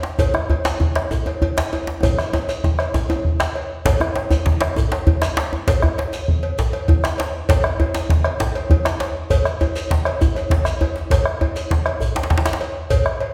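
Bathed in the wet reverb of a recital hall, this powerful, festive excerpt of West African traditional drumming in 12/8 sets an up-front, medium-tuned djembe and a round, close bombo ahead of a tight, cracking second djembe with metal rattles in the background, both djembes struck with hard hands, while a metallic cowbell and a grainy, mellow shekere fill out the ensemble, with drum fills arriving at 2.0 and 10.4 seconds.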